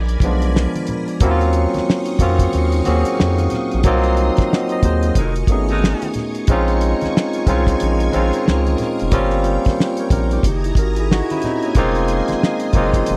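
R&B and neo-soul at 91 BPM with a swung sixteenth feel in Bb minor, introspective and soulful, built on a cloth-damped, thuddy acoustic drum kit with a fat snare and tight kick, a round, deep analog bass, a barky, lightly overdriven tine electric piano through a combo amp, a shimmering vintage string machine holding chorused violin chords, and very quiet low-tuned congas, while a bright saxophone section adds a short stab between 5.2 and 6.1 seconds during a band accent, all captured as a dry, close 1970s-style studio recording in a small room.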